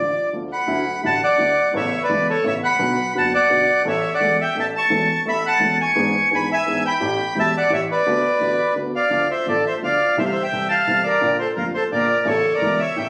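In a loose, rubato three-beat sway, this melancholic, sultry tango fragment sets an up-front, reedy bandoneon melody with a boxy small-room character over a vintage-toned concert grand piano accompaniment whose deep bass, smooth warmth and audible action noise feel intimate, all heard as if caught on a phone in a large studio with moderate reverb, room ambience and compression, before the harmony darkens at 9.1 s.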